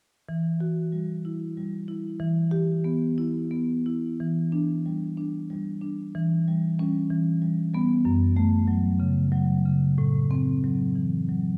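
A solo marimba played with medium mallets enters at 0.3 seconds with a warm, full, close and up-front tone, unfolding a flowing, reflective contemporary classical line in E dorian at 62 beats per minute in a rubato 6/8. The harmony drifts through Emadd9, G6/E, Em7 and Em6 before turning toward F#m at 8.1 seconds and settling on Am6 near the end of this 11.6-second excerpt, cut from a longer piece. Around the dry instrument, a recital hall's reverberant air lends a sense of distance.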